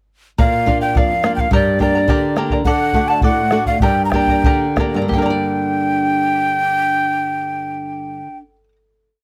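Closely miked and detailed, with little reverb and a faint mains hum, this complete Andean folk piece in G minor moves in a straight 2/4 at 85-106 BPM, slowing from 2.7 to 5.1 seconds before a held final chord, as an up-front, breathy, wooden large quena with crisp chiff sings wistful, festive song phrases over a shimmering, double-strung charango strumming open chords, an up-front, fingerpicked flamenco guitar with audible finger squeak playing oompah bass notes and chord figures, and a deep, dark bombo repeating its pattern until 5.4 seconds.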